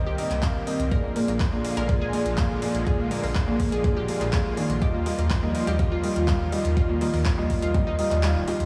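This expansive, dreamy progressive house excerpt at 123 BPM opens with lush slow-attack supersaw pad chords, a round, warbling analog pluck arpeggio with chorus and delay sitting in the background, soft felt-muted upright piano stabs with audible action noise and digital delay, a rumbling, detuned saw bass with tube saturation, and big-room handclaps with metallic hats, before a deep, layered electronic kick arrives to drive it. The pad, pluck, piano and bass pump against the sidechain over Cm7, Bb7 and Ebadd9, all heard through a big sound system in a bare stone room until the kick drops out at 8.2 seconds.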